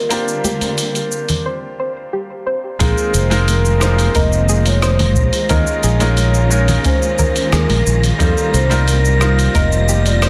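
A dense, heavily limited master with light studio reverb carries this wistful, smooth sunset chillout excerpt. It opens with a mellow soft-mallet vibraphone melody and bright grand piano, both touched with digital delay, over lush bowed strings in the background, a round, dark synth pluck playing arpeggios with chorus and delay, gritty sampler-style drums of cabasa, hi-hat and rim click with soft clipping on the snare, and ringing high-tuned congas. After a break from 1.5 to 2.8 seconds, an up-front fingered electric bass and a deep, tape-toned electronic kick enter, and at 3.3 seconds an airy, breathy wind-like noise texture drifts in behind them.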